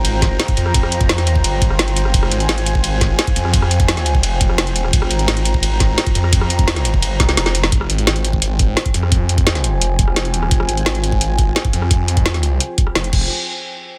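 Aggressive and futuristic, this dark technical drum and bass cut opens straight into a drop that runs to 7.7 seconds, built over a single F minor add-nine harmony. A snarling, saturated sawtooth bass growls up front from the first moment, its detuned, overdriven tone carved by a moving notch. Alongside it, a deep, moody analog pad holds sustained chords with a slow attack, chorus and sidechain pumping, sitting low in the balance. The layered electronic kit features a woody snare, metallic hats, rim clicks, ride and crash cymbals, joined by a knocking kick that enters at 0.2 seconds, and a drum fill at 7.2 seconds launches the next section. The sound is dry, dense and heavily limited, with the bass and kit pushed close, in a fragment lifted from a longer piece.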